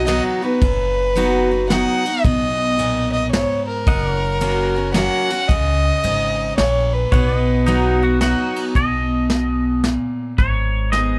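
A swung 3/4 lilt at 111 BPM carries this easygoing, heartfelt honky-tonk and classic country piece in B major, where soft brushes on a punchy kit and a woody, growly pizzicato upright bass support a bright, full-bodied picked jumbo acoustic guitar with finger squeak. A dark, bowed fiddle with light vibrato and portamento sings the melody up front until 8.2 s over fingerpicked pedal steel chords with volume swells, and a compressed, twangy electric guitar with subtle chorus enters at 7.7 s and takes a clean solo from 8.8 s, all in light reverb.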